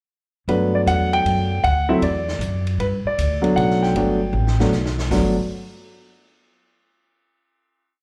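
A relaxed, playful jazz piano trio swings in a lilting waltz time through a very brief complete piece, heard as if live at a gig through the club's sound system with a light, small-room ambience. The grand piano sits up front with a natural tone and a touch of slapback echo, carrying a motif-based melody built in sentence-like phrases alongside syncopated comping in rootless voicings. The upright bass is close and woody, its dark, growly pizzicato walking line moving under the harmony, which alternates between Gmaj7 and Dadd9. The drum kit sounds distant and roomy, with a boomy kick, a medium-tuned snare and a stick pattern on the ride cymbal, and it plays a fill from 4.3 to 5.1 seconds. All three players finish by about 5.3 seconds as the piece arrives at its final chord.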